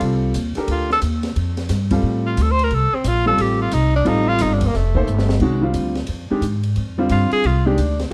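Modal jazz with a searching, intense swing, in which a clear, present tenor saxophone solos up front with plate reverb over boxy upright piano, a woody, thumpy gut-string upright bass and an open acoustic drum kit with a high-tuned snare and boomy kick, whose brief fill at 5.1 seconds arrives just before the harmony moves from F/C to Fm69 at 5.4 seconds, all in a dark studio room cut from a longer piece.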